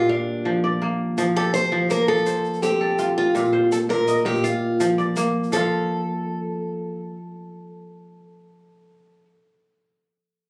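Flowing in a straight 12/8 at 110 BPM in dotted quarters, this joyful West African traditional excerpt pairs ringing, crisp kora arpeggios ranging from Bb2 to F5 with a woody, boxy melody picked on an old ladder-braced acoustic guitar with old strings, both up front, while a grainy, bright tube shaker sits low in the mix from 1.2 to 5.7 seconds, all captured by a phone in a small club room with moderate reverb, audible club ambience and compression, moving over Bb and F chords before the harmony drops away at 5.5 seconds.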